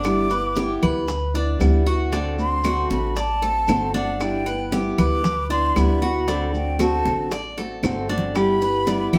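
A breathy, vibrato-laden concert flute carries this relaxed, sunny Cuban son and guajira excerpt at 116 BPM in G major, soloing over alternating G6 and D7 chords while a dark fingerpicked steel-string guitar, a metallic double-strung tres playing arpeggios, a woody, thumpy pizzicato upright bass up front, damped high-tuned congas, very quiet tight bongos, grainy maracas and background claves fill a live room with wet reverb, until a drum fill at 7.8 seconds leads to a small nylon-string guitar adding a second line at 8.4 seconds.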